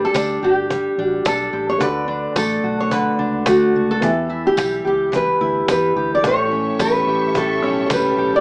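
A fingerpicked nylon-string guitar carries the melody up front with a plate-reverb sheen, over a full-bodied fingerpicked steel-string acoustic, a very quiet, woody and slightly detuned upright piano, and a round, foam-muted electric bass in this carefree, easy-going acoustic pop excerpt in D major at 108 BPM with a light sixteenth-note swing. A snappy, close cajon played with hard hands and a jingly tambourine keep the groove moving through Gsus2, D, Em and A7. At 6.2 seconds a lush bowed string section enters with vibrato and portamento, all heard through a moderate room and a small-speaker sound.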